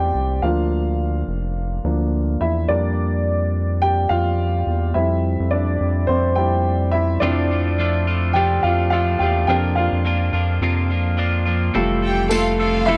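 A dry, close recording in a small room, with a 1970s studio character, frames this uplifting, hopeful slice of piano-driven pop, cut from a longer piece with a light swing. A woody upright piano sits up front with long sustain and carries a solo part throughout, moving through a chain of chords. Beneath it, a deep, round analog bass, also up front, blends sawtooth and sine tones with ring modulation into a dark, evolving, sustained line with a fast attack. At 7.2 seconds a bright, twangy twelve-string electric guitar enters with a clean, picked, compressed riff. At 12.0 seconds a warm studio violin section adds an expressive bowed second line with vibrato, and a jingly tambourine sounds briefly at 12.3 seconds as the passage settles on an Fmaj7 chord.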